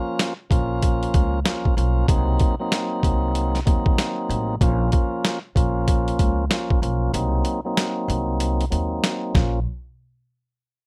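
Reflective and dark, this boom-bap hip-hop fragment pairs a full, lightly overdriven tonewheel organ with vibrato, cassette-tape grit and a filter sweep up front, a compressed, pitched-down sampler-style drum kit with a thumpy kick and medium-tuned snare that drops its kick at 7.1 seconds, and a woody pizzicato upright bass, all in a dry room.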